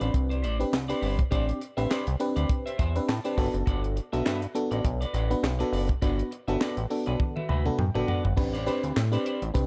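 Funky and danceable, this short cut of early-eighties boogie funk moves at 102 BPM in 4/4 with a light swing on the sixteenths, set in A dorian and shifting between Am11 and Gmaj7. A tight funk drum kit sits up front with a dry, acoustic sound, bright cymbals, a high-tuned snare and a tight kick, with crash, hi-hat, toms and handclaps filling out the groove, plus a drum fill from 7.2 to 8.4 seconds. The chorused synth bass is retro and glossy, its nasal pulse and sawtooth tones shaped by pulse-width modulation, a filter pluck and a moving notch, sitting prominently in the low register. A glassy FM electric piano with a bell-like attack and a noise layer carries the chords, stepping forward with fills at 2.5 and 7.2 seconds. A clean, picked semi-hollow electric guitar adds a hollow-bodied riff bathed in lush chorus, and the whole piece sits in a small room with a dark production feel.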